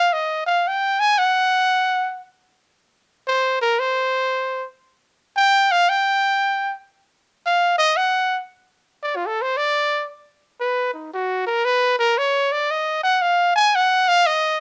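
Jazz at 115 BPM in 4/4 with a swinging eighth-note feel, this short cut from a longer piece carries a late-night, swinging mood. A lone trumpet carries the whole passage, playing solo from 0.0 to 14.6 seconds and ranging from Eb4 up to Ab5. Its tone is bright and present, sitting up front, with light vibrato and scooped notes that give the line a jazz-style inflection. The opening phrase runs to 4.3 seconds, and a second phrase of similar shape follows through to the end. Close, detailed microphones and light reverb keep the horn intimate and clear.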